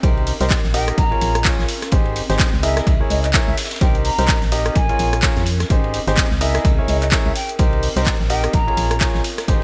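Joyful and feel-good, this piano house excerpt moves at 127 BPM in 4/4 with a 58% swing on the sixteenths, tuned slightly flat to A4 = 436 Hz. A bright, polished concert grand carries the riff through a low-pass filter and delay, pumping against the sidechain, while a hollow, organ-like FM bass with a fast, decaying attack underpins a cycle of Cm7, Bbm7, Abmaj7 and Dbm6. The beat stacks a punchy electronic kick at the front, an analog drum machine supplying handclaps, hi-hat and rim click, and a saturated, gritty breakbeat kit sitting in the background with dark cymbals, hats and snare thinned by high-pass filtering. A warbling, nostalgic tape-like pad with chorus, phaser and its own reverb hovers behind, also breathing with the sidechain. From 0.7 to 9.0 seconds a mellow, pure-toned concert flute carries the melody, roughened by vintage 12-bit sampler grit and trailed by delay. Light reverb and a small room give the mix a bright 1980s-style digital sheen.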